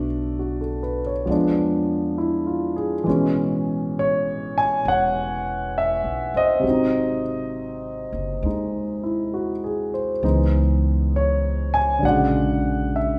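An intimate, up-front concert grand piano with audible action noise and deep bass enters together with a woody, thumpy pizzicato upright bass on gut strings, carrying this wistful, smoky jazz ballad at 67 BPM in a swung 4/4 through Bm7, E7b9 and Amaj9 toward an A#7alt in a fragment cut from a longer piece, set in the 1.5-second reverb of a recital hall.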